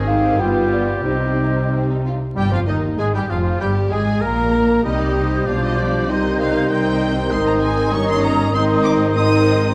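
A rich, focused violin section carries the melody through this dramatic, stormy excerpt from a quick classical-period symphony movement, set in 2/4 at 97 BPM with a rubato feel. A second violin section, expressive and close yet sitting in the background, adds its own line alongside a pure, hollow flute that sounds distant, a warm oboe with light vibrato, and a very quiet clarinet with a smooth top. Beneath them, a distant, roomy bassoon and a smooth, even viola section supply accompaniment, while a vintage-toned French horn section holds sustained chords in the background. Cellos and double basses anchor the bass with bowed, vibrato-laden tone. The harmony moves from G7 to Cm, and a new section begins at 2.4 seconds, passing through chords such as Fmadd9, Gm, G7/B and Ab before the cut at 9.7 seconds. A moderate scoring-stage reverb surrounds the orchestra, and the dark production carries a layer of vinyl crackle.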